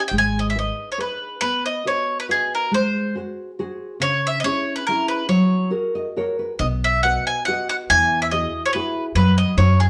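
A live-in-one-room take with lush studio reverb frames this lively, romantic Italian folk serenade in B major, moving at 140 BPM in a lilting, swung 3/4 with rubato touches. A mellow, picked bowl-back mandolin sings the melody up front with its doubled strings, while a warm, full-bodied nylon-string guitar fingerpicks the accompaniment and adds a fill at 5.7 seconds. A dark, pizzicato upright bass plucks briefly at the start, then returns at 6.6 seconds to anchor the closing bars of this excerpt.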